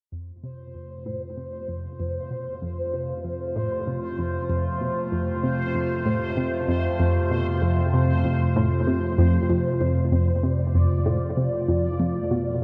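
Ambient in F lydian at 96 BPM, this expansive, cosmic excerpt from a longer piece opens with a swirling, detuned analog pad holding sustained chords through phaser and chorus, sitting up front while a tight, driving sequenced synth riff with a sawtooth filter pluck repeats low beneath it, both fading in over the first 10.1 seconds. From 0.7 seconds a bubbling, resonant texture of random filter steps floats high above, bathed in its own reverb. The echo-heavy mix carries a moderate plate reverb, cassette tape character and lossy compression artefacts, and a new section arrives at 10.1 seconds.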